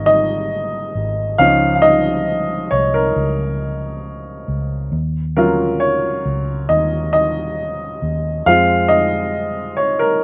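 A straight 4/4 pulse at 68 BPM carries this tender, heartfelt pop ballad fragment, where a woody, up-front upright piano plays a solo across the full 10.2 seconds over Absus2, Dbadd9, Ebm7 and Fm chords, while a quieter vintage electric bass adds a dark, round, punchy, foam-muted low end, all in a dry outdoor sound.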